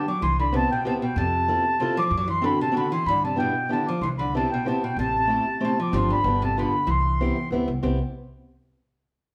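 Charming and whirling, this short cut from a longer musette waltz moves in a brisk three-beat lilt with a straight feel. A mellow accordion carries the melody up front, its reedy, smooth voice shaded dark by the tone chamber and colored by a slow beating between its reeds. Beneath it, a clean, hollow-body archtop guitar, miked and amplified, picks a low second line. A fingerpicked parlour-style steel-string guitar, boxy and close, fills in the accompaniment, with an occasional finger squeak. The upright bass joins at 0.2 seconds with a woody, growly pizzicato on steel strings, and the band, playing live in one room, is wrapped in a generous, wet studio reverb as the harmony circles through jazzy seventh chords before settling back home.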